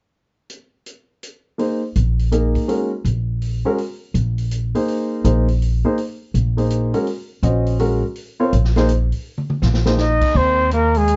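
In a swung waltz time, a vintage acoustic drum kit opens this short modal jazz excerpt alone, its punchy kick, medium-tuned snare, hi-hat, crash and toms sounding natural in a small room. A smooth grand piano with long sustain enters up front at 1.6 seconds, followed by a woody pizzicato upright bass on steel strings, held close in the mix, as the harmony moves between minor and major chords. The mood is searching and spiritual, and a drum fill leads into the final moments, where the piano stops at 10.0 seconds. There a breathy, whispered trumpet takes the melody up front, with light vibrato, soft attacks, scooped notes and a plate reverb giving it an intimate glow. Beneath it, a mellow tenor saxophone carries a second line in subtone, its vibrato and smooth top rounding out a dark production under light reverb.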